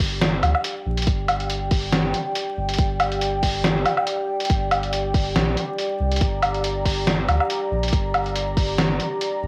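Brooding and meditative, this deep dubstep excerpt moves at 140 BPM with a swung half-time feel in G minor, as a dark, detuned sawtooth pad holds a slow-attack G minor chord with chorus and cassette tape colour over a round, soft sub bass, while an overdriven, tight electronic kick sits up front until 8.7 seconds beside a gritty, pitched-down sampler-style kit of hi-hat, medium-tuned snare and woodblock, all inside a light reverb and a home-cassette sound flecked with vinyl crackle.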